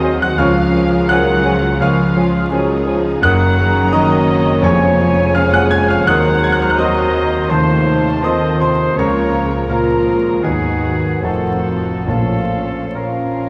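Romantic classical for piano and orchestra in Bb minor, tragic and brooding at a rubato 67-87 BPM: a clear, up-front concert grand carries the melody with deep bass and long sustain, joined on the melody by a veiled con sordino violin section, while oboe, a pure flute section, a second muted violin line and a distant clarinet weave secondary lines over mellow bassoon, muted violas, horn chords and dark cellos and basses, with very quiet timpani strokes at 4.6 and 12.1 seconds, all in a moderate concert hall reverb under vinyl crackle.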